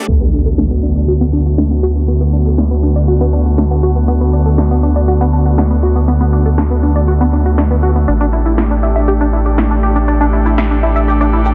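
Progressive house at 120 BPM in D major, expansive and uplifting, where an airy, breathy pad holds sustained chords with chorus up front, a tight, detuned sawtooth synth drives arpeggios through chorus, phaser and digital delay, a round analog bass sits deep, a grainy tube shaker and an electronic impact from 0.1 to 2.1 seconds stay in the background, a punchy layered electronic snare drum enters at 0.6 seconds in a small room, filter sweeps run across the drums, arpeggio and pad, and the chords move from D6 to A7sus4 at 8.1 seconds under a dense, heavily limited master with light reverb.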